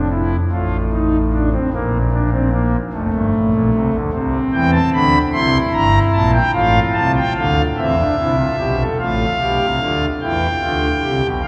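Elegant and stately, this brief fragment of a baroque-style three-part fugue in F major moves at 49 BPM in a straight 6/8, played by a solo pipe organ on thick, romantically voiced foundation stops that sit up front across a span from F1 to C6, its harmony turning through Bb, C and C7 before a new section from 9.0 s moves from F/A to Em, the whole heard in the long, wet reverb of a cathedral-like church or concert hall.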